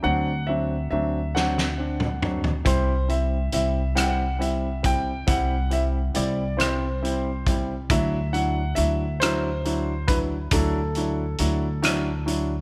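Lightly reverberant and up front, this dramatic, melancholic six-eight pop ballad at 46 BPM sets a polished grand piano melody with slapback echo over warm grand piano accompaniment and woody, dark pizzicato upright bass, moving from D7 through C to Dadd9, while a loose, gritty indie drum kit with a fat snare and punchy kick enters at 1.4 seconds with a fill.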